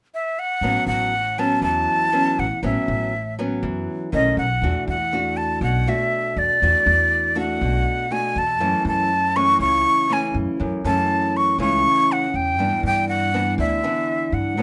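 A breathy, bright jazz flute with crisp, chiffy attacks and vibrato opens this sunny, relaxed bossa nova in A major at 120 BPM at 0.1 s, joined at 0.6 s by an up-front, fingerpicked nylon-string guitar and a woody, thumpy pizzicato upright bass as the chords move from A69 through B9, E9sus4 and F#m7 to G6 under light reverb in this short passage cut from a longer piece.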